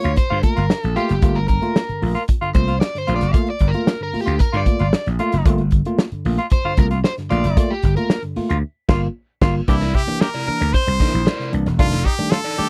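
A straight, driving 4/4 funk groove at 114 BPM in G dorian opens this funky excerpt, with a dark, punchy soul drum kit and a growly, up-front slap bass anchoring crunchy overdriven guitar that takes a solo until 9.7 seconds, worn electric piano stabs, and a raspy tenor saxophone second line, before a band accent leads into a brilliant, forceful trumpet melody at 9.7 seconds over C9 and F13 chords in a dry, close 1970s-style studio sound.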